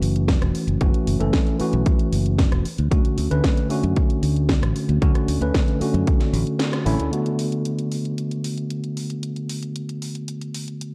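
A punchy, overdriven electronic kick sits up front in this groovy, sensual nu-disco excerpt at 114 BPM in a straight 4/4, entering at 0.3 seconds. Around it, a layered house drum kit plays hi-hat, rim click and a cracking snare, all overdriven and re-recorded in a large room. A round, direct fingered electric bass holds the low end up front. A bright, clean tine electric piano, heard through built-in speakers with a low-pass filter and tape echo, carries the chords from F#m7 to Dmaj7. After a band accent, the bass stops at 7.1 seconds and the harmony moves to Bm7, while a filter sweep runs on the electric piano until 10.9 seconds. Light digital reverb and a dry, gritty cassette-tape character give the cut a lo-fi hardware feel.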